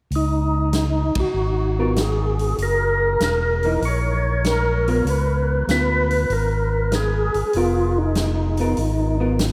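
Soul jazz organ trio in a soulful, bluesy swing at 97 BPM in Db mixolydian, where a fat, lightly overdriven tonewheel organ bass and a percussive organ melody with key click, chorus vibrato and slow rotary speaker sit up front over an acoustic big-band drum kit with a punchy kick, while a dark, clean hollow-body jazz guitar enters in the background at 1.8 seconds, a band accent lands at 1.0 seconds, the chords move from Dbsus2 through Gb to Db13, and everything rings in a vast, echoing cathedral reverb across this short cut from a longer piece.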